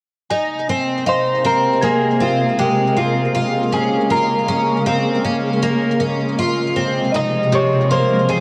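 The picked twelve-string acoustic guitar sits up front, its bright, octave-doubled arpeggios carrying an audible finger squeak, colored by analog chorus and digital delay. This blissful, floating dream pop excerpt moves at 79 BPM in a straight 4/4 in Ab major, cycling through Abadd9, Bbm7 and Fm. A shimmering, ethereal pad enters at 0.8 s with slow-attack sustained chords, an octave-up glow, granular texture, chorus and its own built-in reverb. High above, a very quiet FM synth bell adds pure, gentle, decaying tones. At 1.1 s an electric guitar through a small old amp takes the melody, its twangy, slightly broken-up tone compressed and echoed by digital delay. A huge ambient reverb surrounds the mix, and worn cassette tape gives the sound a warbly pitch drift.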